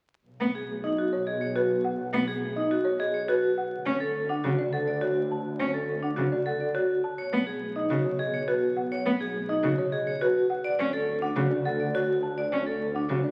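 Classical minimalist pattern music at 104 BPM in 3/4 with a straight feel, this bright, propulsive excerpt from a longer piece moves through B, D, Badd9 and D, with a lush, bowed double bass section holding the low end beneath a close, expressive solo cello that colours its line with vibrato and portamento. A metallic, ringing vibraphone with fast motor vibrato spins up-front arpeggios, while a woody, rustic folk marimba with a boxy character carries the melody. Everything sits in a recital hall reverb and wears the crackle of a very old 78 rpm record.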